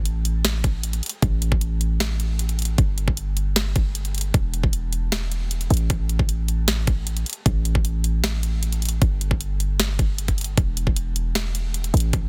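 Future bass in a half-time feel, playful and bright, built from a deep, boomy 808-style bass with a sine core, a noise layer and a fast, decaying attack, pumped by sidechain under a knocking electronic kick that enters at 0.6 seconds. A trap kit adds a sharp snare and bright hi-hats, with the drums and bass all sitting up front. The sound is dry and dense, with a heavily limited modern master, and this short cut is taken from a longer piece.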